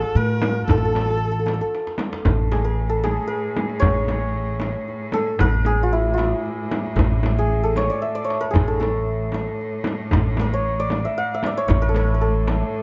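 A dark, lightly reverberant production frames this stately, festive Persian modal piece in A dastgah chahargah at 76 BPM in 6/8, cut from a longer work, where a mellow, shimmering santur carries the melody up front over a woody, thumpy pizzicato upright bass, a deep tombak heard from a distant large room and a band-limited, vintage frame drum in the background, while a focused bowed kamancheh with vibrato and portamento plays a brief second line until 1.7 s and, after a drum fill, a smooth, distant bowed cello holds an A drone from 2.3 s.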